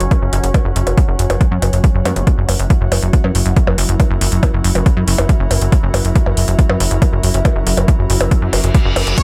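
Alien and psychedelic, this psychedelic trance excerpt sets a punchy, up-front electronic kick and a layered techno kit of metallic hats, crash and percussion blips alongside a funky, saturated sawtooth analog bass, while a morphing, warbling wavetable pad fades in under phaser and sidechain pumping, a breathy chorused pad hovers softly in the background, a zap flashes at 2.1 s, a reverse cymbal rises from 8.5 s, and a detuned unison supersaw stab lands at 9.2 s in a dry mix.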